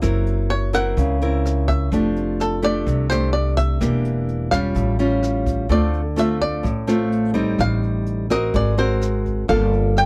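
A straight 4/4 bossa nova pulse at 127 BPM sets a sunny, breezy mood in this short piece cut from a longer performance, tuned slightly sharp to A4 = 443 Hz. Fingerpicked nylon-string guitar carries the accompaniment up front with a small, warm tone, alongside a woody pizzicato upright bass on steel strings, while a brushed jazz kit sits in the background with hi-hat, rim click and a boomy kick in a natural small-room sound. From 0.5 s a bluegrass banjo takes the melody, its fingerpicked line twangy and percussive and placed up front over the groove. The opening section stays in F major over colourful chords such as Gb7#11 and F69, then at 5.7 s the music turns to D minor, moving through Dm7, Am7b5 and G#9 to Gm9. The recording is dry and close, with little reverb, in a 1970s studio style.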